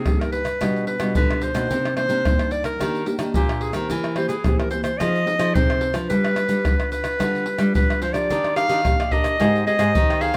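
A straight, lively samba and choro groove in 4/4 drives this short excerpt, with tube shaker, a tight surdo, pandeiro and tamborim played with hard hands, sitting close and up front from 0.1 seconds. Over it, a bright clarinet carries the solo melody in a jazz style, shading its notes with light vibrato and scooped attacks. Two classical nylon-string guitars fill out the harmony beneath: one fingerpicks the accompaniment with an audible finger squeak, while the other thumb-plucks a warm bass line. At 8.3 seconds, a crisp, picked cavaquinho joins in the background. The mood is bittersweet, moving through minor-key changes such as Cm7, Fm7 and G7 before lifting toward Ebmaj7 and Abmaj9, all set in a moderate studio reverb.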